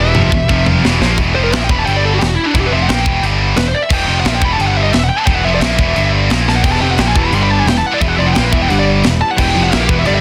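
Dark and epic, this heavy metal excerpt, cut from a longer piece, drives at 176 BPM in a straight 4/4, moving among E minor, G and A# power chords. A distorted, high-gain lead guitar with a warm tone and digital delay plays a melody throughout, turning to a solo from 1.2 seconds onward and reaching from D4 up to C6. Beneath it, a bright, heavy high-gain guitar and a tight distorted guitar in the background hold a low riff throughout, joined by a dark, double-tracked fuzz guitar that drops out between 1.2 and 6.6 seconds. A brilliant pipe organ plenum with baroque-voiced mixtures sustains chords in the background at the start and again from 6.7 seconds. A bright, direct picked electric bass sits up front, while a tight acoustic drum kit with a high-tuned snare, china and crash cymbals, toms and a rolled-off top opens with a fill and adds another at 6.5 seconds. Light reverb frames a dense, heavily limited modern master.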